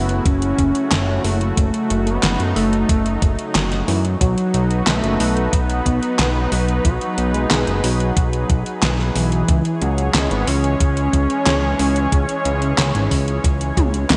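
A thick, detuned sawtooth unison lead carries the melody of this romantic, uplifting synthwave excerpt at 91 BPM, with mellow vibrato, lush chorus, delay and a touch of vintage 12-bit sampler grit. Beneath it, a smooth, warbling analog pad holds sustained chords with a slow attack, its chorus breathing under sidechain pumping, while a fat, up-front analog bass adds tube-saturated weight with a filter sweep and ring-modulated edge. A layered pop drum kit brings handclaps, metallic hi-hats, a fat snare and toms wrapped in gated reverb, joined from 0.3 seconds by a thumpy, tape-toned electronic kick. The harmony moves from F#m7 to B and then C#m, and a drum fill at 13.8 seconds closes the passage. A moderate hall reverb and bright 1980s-style digital production give the whole a glossy, spacious sheen.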